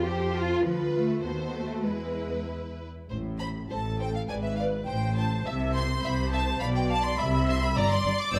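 A quick classical-period movement for string orchestra, cut from a longer piece, with an urgent, stormy mood and a rubato feel in duple metre. One violin section carries the smooth melody while a second, more focused violin line reaches higher, a rich viola section supplies the accompaniment, and lush cellos join a soft-attacked, expressive double bass section that sits up front despite its distant tone. Every section plays bowed with vibrato in a wet stone-room reverb, and the harmony passes through diminished chords before a new section begins at 3.1 seconds.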